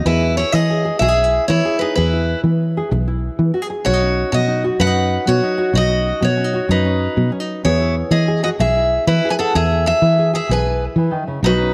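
Set in a moderate plate reverb, this sunny, danceable highlife guitar band excerpt in E major moves at 126 BPM in a straight 12/8 feel, cut from a longer piece. A bright, full-bodied picked steel-string acoustic guitar carries the melody up front, while a fingered electric bass sits equally forward with a round, dark, foam-muted tone, and a deep classical nylon-string guitar fingerpicks the accompaniment further back. The harmony shifts from E to Badd9 at 3.8 seconds and returns to E at 7.6 seconds.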